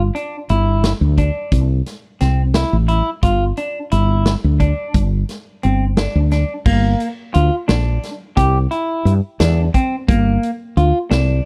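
Brooding and tense, this progressive instrumental band piece moves in 5/8 at 175 BPM counted in eighths, with a straight feel in G dorian, tuned slightly low to A4 = 439 Hz. A woody fretless electric bass sits up front between G1 and G2, its dark, growly and round tone coming across direct and amped with a hollow-body character. A clean, picked semi-hollow electric guitar plays arpeggios between Bb3 and G4, its tone warm and up front yet set lower in the balance than the bass. A swinging big-band drum kit of crash cymbal, hi-hat, kick drum and snare drum sounds acoustic and natural, with a punchy kick, a medium-tuned snare and a big-room air of its own. The harmony moves from G5 to C and back, then at 6.7 seconds shifts to a Gm7 and C pattern for the second section. The whole cut has the dry, close feel of a 1970s-style studio in a small room.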